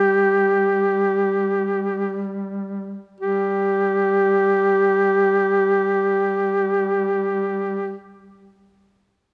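A mellow duduk melody and a second duduk holding a low drone sound together from the very start of this solemn, longing fragment of Caucasian folk lament, cut from a longer piece. The music moves in free time, tuned to A4 = 441 Hz, and the first phrase slows down over its opening 3.2 seconds before a new passage begins and runs to about 7.7 seconds. The lead duduk sits up front and close-miked around G4, singing in folk style with vibrato and scooped notes. Beneath it, the drone duduk rests near G3 at a lower level, its smooth top also shaded with vibrato and scooped notes. Light reverb gives the two reeds a gentle sense of space through to the end at 8.0 seconds.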